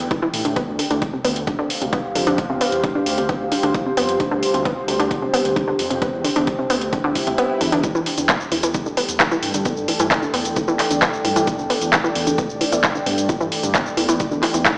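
A dark, detuned saw bass rumbles in from the very start, alongside a techno drum kit of handclaps, shaker and metallic hi-hats sitting up front, while a deep, moody pad warbles above with chorus, built-in reverb and a slow, vintage haze. A punchy, layered electronic kick and a round, nasal analog pluck riff join almost at once, the pluck filtered and wave-folded with chorus and digital delay. This driving peak-time techno cut feels intense and shadowy, with the bass, pad and pluck all pumping against the sidechain in a straight groove. The harmony moves from Em to Dm and holds there until an electronic swell sounds in the background at 7.1 seconds, the kick briefly drops out, and Em returns at 7.8 seconds. The saturated low end and up-front drums sound as if played on a big sound system in a bare room, wrapped in a lush hall reverb yet carrying a boxy, small-speaker edge.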